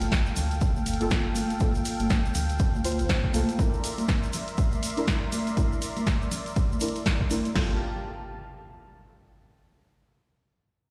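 Warm and deep, this deep house excerpt moves at 121 BPM in 4/4 with a swung sixteenth feel, sitting in G dorian as it shifts from Gm9 to C9 at 3.6 seconds and back to Gm9 at 7.6 seconds. A smooth, detuned analog pad holds sustained chords with a soft attack and long release, while a mellow, dark chord stab with a vintage warble plays stabs through chorus and delay under a filter sweep, both breathing with sidechain pumping. A full sine-and-triangle sub bass with an added octave carries the low end, dropping out at 3.4 seconds and returning briefly at 7.6 seconds. Two analog drum machines drive the groove, one up front with a punchy kick, snare and crash cymbal, the other adding hi-hat and snare, both re-recorded in a large room. Bright congas struck with hard hands and a grainy, band-limited tube shaker fill in the percussion, and an electronic sub drop and impact hits at the start and again from 7.6 seconds. 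The mix carries light digital ambience and a stone room reverb, as if played on a big sound system in a bare room.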